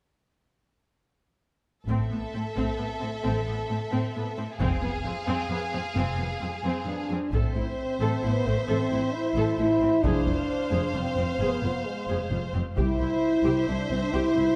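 A cinematic, epic orchestral film score cue, cut from a longer piece, with a dramatic, relentless mood in a three-beat metre. At 1.9 seconds the full string body enters together: violins carry a lush, vibrato-rich melody in a narrow high range while a second violin line sits beneath, violas add expressive accompaniment with soft attacks and portamento, and cellos and double basses anchor the bass, the basses sounding smooth and somewhat distant. A taiko ensemble struck with hard sticks drives underneath with a small-room sound. At 6.9 seconds a French horn section joins up front with sustained chords in a classical style, broadening the texture as the harmony moves between A minor and F minor before landing on C. The whole cue sits in a moderate scoring-stage reverb, with some lossy compression artefacts audible in the sound.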